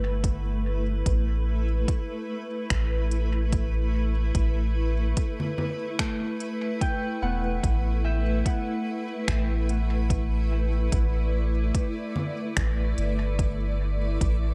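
Hazy and meditative, this ambient dub excerpt, cut from a longer piece, settles into a relaxed, lightly swung 4/4 groove. A cloudy granular pad holds sustained chords throughout, its sine-based tone blurred and slowly evolving with a slow attack, long release and its own built-in reverb. Beneath it, a soft, round dub sub bass sits up front with a deep, sustained presence. A layered electronic kick with an overdriven edge anchors the beat, while a produced electronic kit of congas, finger snaps and crisp hats adds a tape-warm texture with dub echo and the air of a large room. A fingerpicked Celtic harp rings out briefly at the very start, then returns from 6.0 to 11.2 seconds with acoustic arpeggios trailed by tape echo. Around the pad's reverb, the overall recording stays fairly dry and close.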